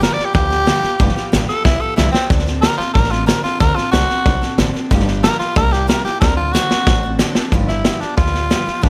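A raspy, growling tenor saxophone with vibrato and slapback echo leads this rollicking, rowdy rockabilly excerpt at 184 BPM in G mixolydian, soloing up front over G7, D7 and C7 changes until 7.5 seconds. A thumpy pizzicato upright bass with gut strings and a bright, full-bodied picked steel-string acoustic guitar with audible finger squeak fill out the band. A vintage drum kit with a punchy kick and a rolled-off top drives the straight 4/4 feel, breaking into fills at 1.6 and 6.2 seconds, all inside a small room ambience.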